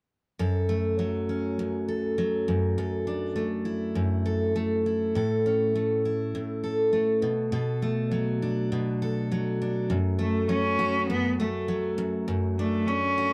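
Pop excerpt at 101 BPM in a heartfelt, carefree mood, where a full-bodied picked steel-string acoustic guitar sits up front and carries the accompaniment through F#m, Dadd9/F#, A and Bm7, before a rich bowed cello with intense vibrato enters at 10.2 s to sing the melody above it over light reverb and a dark production.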